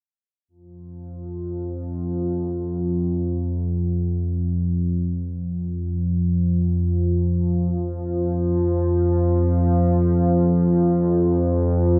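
A dreamy, reverb-soaked mix opens this brief ambient fragment, cut from a longer piece, with a plate reverb lending a long, hazy tail of about 3.1 seconds. Its mood is desolate and unsettling, drifting in free time. A single analog drone enters at 0.9 seconds and holds until the close at 12.0 seconds, sitting up front and spanning F2 to F3. Built from detuned sawtooth and pulse waves with pulse-width modulation, its vintage tone warbles and evolves under a layer of chorus. The drone rises with a slow attack, sustains at length, and carries a long release, so the piece feels like one suspended, uneasy breath.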